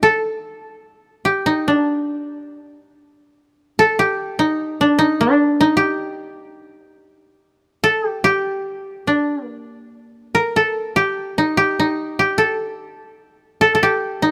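Free rubato phrasing loosely shapes a 2/4 pulse in this austere, calm Japanese traditional chamber piece, cut from a longer work. A solo koto, plucked with fingerpicks, carries the whole 14.3 seconds in a middle register from D4 to Bb4, its dry, woody tone set up front; a short opening passage gives way at 3.3 seconds to a longer second one. Close, detailed microphones and a light reverb keep every string's attack clear and intimate.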